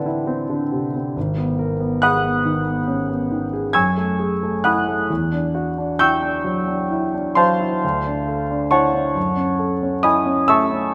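Heard in a moderate recital-hall reverb, this mysterious, nocturnal fragment of impressionist solo piano features a present, up-front grand with long sustain spanning G#1 to G#6, drifting in rubato 9/8 at roughly 41-48 dotted-quarter beats per minute through lush chords that move from C69/A to G#m9, F#m9, Em9 and Dm9 before reaching F#m7, all tuned slightly low at A4 = 436 Hz.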